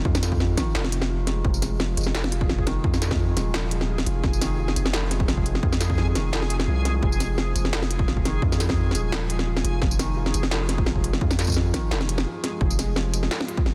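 A dense, heavily limited modern master with a digital ambience carries this spacious, heavy half-time drum and bass excerpt at 172 BPM in F minor, with a light 16th-note swing. A felt-muted upright piano plays soft, intimate arpeggios with audible action noise, coloured by vintage 12-bit sampler grit and delay, over a deep, up-front 808-style sine bass with long, decaying notes. A tape-warm electronic kick and an up-front industrial kit of clanging snare, crisp hats and tambourine sit in a small room, while from 2.4 s a reversed, dreamy, detuned swelling texture, bright and granular with built-in reverb, hovers in the background until 12.6 s, just after a brief break at 12.3 s.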